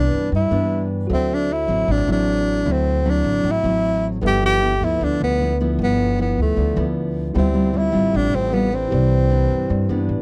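This relaxed, breezy bossa nova, cut from a longer piece, opens with the full quartet together: a breathy tenor saxophone carries the jazz-style melody up front, with a mellow subtone, light vibrato and scooped notes, over classical fingerpicked nylon-string guitar and a woody, thumpy pizzicato upright bass on gut strings. A clean tine electric piano sits in the background through a combo amp as the harmony moves from Cmaj9 through D9, G13 and Dm11 before settling back on Cmaj9. The sound is dry and close, in the manner of a 1970s studio recording.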